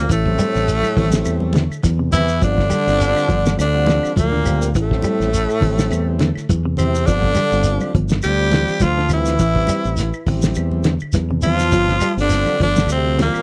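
Driving and intense, this afrobeat excerpt at 103 BPM in G dorian puts a raspy, scooped tenor saxophone melody up front over a fingered electric bass and a muffled, cloth-damped drum kit with a fat snare and tight kick, while a distant clear trombone, a very quiet brilliant trombone section, a reedy overdriven combo organ, clean semi-hollow guitar arpeggios, grainy shekere, damped congas and woody claves fill out a dry, close 1970s-style small-room sound moving between Am7, Gm7 and G5.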